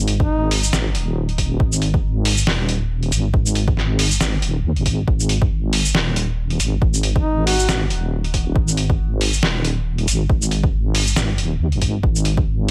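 Cavernous and meditative, this deep dubstep excerpt moves with a swung, half-time feel, carried by a dark, wobbling sawtooth-and-sine bass that sits up front with chorus and tube saturation, alongside a punchy, layered electronic kick. A gritty, pitched-down sampler-style kit of hi-hat, shaker and medium-tuned snare adds compressed, tape-flavoured texture. A mellow duduk in a folk style, with vibrato and scooped notes, appears only briefly at 0.2 and 7.2 seconds, its phrases trailing off in dub echo over a dry, close-sounding mix.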